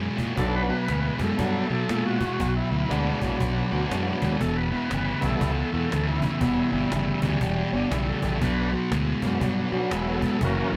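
A swung 4/4 groove drives this brooding, heavy blend of blues rock power trio and southern rock, cut from a longer piece. A thick, double-tracked fuzz guitar sits up front with a picked riff, joined down low by a growling picked electric bass that is bright, punchy and overdriven straight from the amp. A woody cajon enters at 0.2 seconds, played with soft hands and faint snares, close and dry in the mix. At 0.4 seconds the tonewheel organ arrives and takes the solo spotlight, its full, lightly overdriven sustained chords shimmering with vibrato through a slow rotary speaker. The harmony moves from Bm to Em and back to Bm, and the band sounds as if playing live in one room, with a moderate studio reverb.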